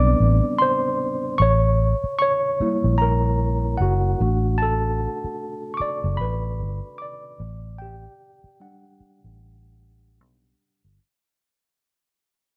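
Swung sixteenths in 4/4 carry this soulful, introspective neo-soul R&B fragment, cut from a longer piece, where a worn, slightly out-of-tune tine electric piano, lightly overdriven through its built-in speakers, solos over chords moving from Am11 to Gmaj7sus2, while a dark, foam-muted, round fingered electric bass sits up front in a dry, close 1970s-style studio sound that fades out across all 11 seconds.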